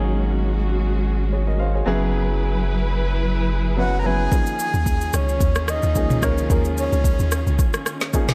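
This deep, hypnotic amapiano excerpt is in Eb minor at 110 BPM, with a 55% swing on the sixteenths. A saturated sine sub bass carries the low end for the opening 4.3 seconds, and then the afro-pop drum kit enters with a deep kick, woody snare, rim click, shaker and toms, its hits echoed by analog delay. The deep log drum bass enters at 4.7 s with a round, dark, percussive thump that sits up front in the mix. Throughout, an intimate grand piano with audible action noise plays accompaniment while a lush bowed string section holds sustained chords with vibrato and sidechain pumping, moving through Ab9sus4, Gb9sus4 and Eb9sus4. A breathy, flute-like synth lead with a sub octave carries the melody from 3.8 s, colored by chorus and vibrato and trailed by analog delay. The mix is dry, with little reverb but heavy echo.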